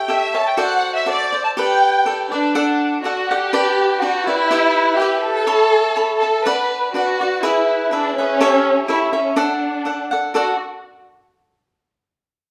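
A dark, lush violin section carries the melody with expressive vibrato from the opening moment, while a bright, crisply picked cavaquinho accompanies it, both sitting up front in this proud, festive mariachi fragment in a loose, rubato two-beat feel. The harmony moves from A7 through Gadd9 before settling into a turn that passes through Em, Bm and E back home to D around 9.4 seconds. A moderate, large-room reverb gives the sound of a band playing live together in a studio.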